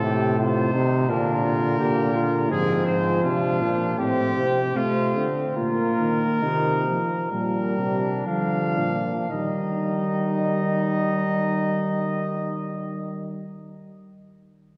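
A distant trumpet melody, a punchy flugelhorn second line, a close-miked euphonium accompaniment with light vibrato and a mellow bass trombone bass all sound together from the start of this lively, joyful classical canzona fragment for brass ensemble in Eb major. It moves in 4/4 at 55-87 BPM, slowing from 1.1 to 9.3 seconds before a new section arrives on an Eb chord, all bathed in a wet church reverb within a dark, warm production.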